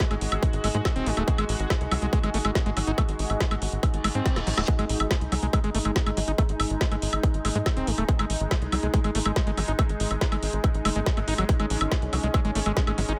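A tight, layered electronic kick sits up front, driving this intense psychedelic trance passage at 141 BPM in straight 4/4, tuned to A4 = 444 Hz. Beneath it, a punchy sequencer bass built from detuned sawtooth, square and triangle waves plays with a fast filter pluck and a dark, decaying tone, while an overdriven acid bass riff squelches through resonant filter sweeps with gritty saturation, sidechain pumping and tape echo. An electronic drum kit adds a woody snare, metallic hats and woodblock, re-recorded in a small room, and a brief drum fill at 4.3 seconds coincides with a background reverse cymbal from 4.0 to 4.7 seconds. Further back, a bubbling texture of random stepped filter moves on detuned sawtooth holds sustained chords, opening on G#5, with chorus, reverb and sidechain pumping. A deep, moody ambient pad of unison sawtooth and sine with a sub octave and a slow attack sits behind it all, wrapped in chorus and reverb, and light digital ambience frames this 13-second cut from a longer piece.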